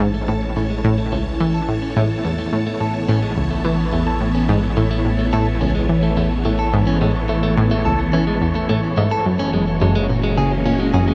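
A detuned sawtooth pluck stands up front, playing a bright, fast-attack riff that decays into chorus and tape echo. It drives this cosmic, expansive piece of sequencer-driven space music in a straight 4/4. Alongside it, a bright vintage string machine, also up front, holds sustained chords that swirl through ensemble chorus and phaser, its slow attack and long release fading in across the full 11.1 seconds. A clean, picked electric guitar joins at 0.1 s with compressed arpeggios on its own tape echo, also fading in. Underneath, a round analog bass blending sawtooth and sine sits deep and dark. The harmony rests on A before moving to F#7 at 9.3 s, all of it washed in a huge, wet reverb with a 7.3-second tail, in a passage cut from a longer piece.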